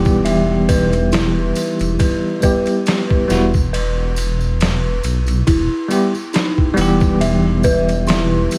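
A bell-like tine electric piano with tremolo and tape echo, eerie, warbling FM synth bell arpeggios with chorus, phaser and 12-bit sampler grit, and a deep, rumbling detuned saw bass all open this brooding, cinematic trip hop excerpt in E minor together, resting on a single Em chord. From 0.1 seconds, a gritty, pitched-down sampler-style kit with a thumpy kick, snare and ride sets a slow 69 BPM groove with a light 16th-note swing, while a distant tambourine sits far in the background. Vinyl crackle and light reverb color the whole.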